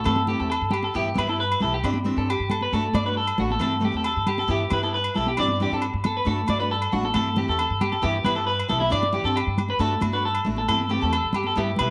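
Warm and danceable, this short highlife guitar band cut at 136 BPM in a straight 4/4 sets an up-front clean electric guitar playing arpeggios, with subtle chorus and slapback echo, over a picked steel-string acoustic guitar, a woody, thumpy pizzicato upright bass, ringing agogo bells and bright, high-tuned congas struck with soft hands, all cycling through Am, Em/G, Cadd9/G and D/G inside a moderate spring reverb and small-room ambience.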